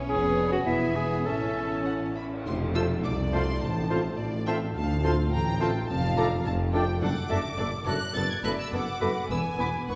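A straight 2/4 pulse at 105 BPM drives this playful, whimsical film cue in F major, cut from a longer piece: a lush, expressive violin section carries the high melody over a smooth second violin line, a bright solo clarinet, background violas and cellos, a tight French horn section holding chords and focused bowed double basses, while a bell-like, slightly out-of-tune celesta also plays the melody until 2.1 seconds and dark cymbals with tam-tam colour the opening. An accent at 2.5 seconds brings in a soft-attack tuba on the bass, and from 2.8 seconds a clear oboe in the background, a very quiet airy, hollow flute ensemble and a very quiet distant bassoon add inner lines. The ensemble is heard from further back in a wet scoring-stage reverb, giving the quirky cue a spacious, storybook glow.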